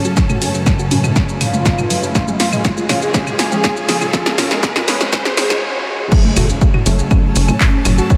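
A thick, nasal unison lead with vibrato opens this hypnotic, dramatic melodic techno excerpt at 121 BPM in F# harmonic minor, alongside a morphing wavetable pad, soft round arpeggiated plucks through analog delay, very quiet muted dub chord stabs, a tense bowed-like drone, a clear studio string section in the background, and a punchy, tape-toned analog drum machine of claves, handclaps, hi-hat, shaker, snare, toms and crash, joined by an up-front electronic kick at 0.2 s. The lead, pad, plucks and strings pump against the sidechain as filter sweeps, a drum fill and a very quiet electronic riser and swell build over F# minor and C# chords, until a stop arrives at 5.6 s, where the drone also ends. At 6.1 s the drop lands with an impact, and at 6.4 s a tight, driving sawtooth sequencer bass on F# enters, all in a dreamy mix soaked in a huge ambient reverb.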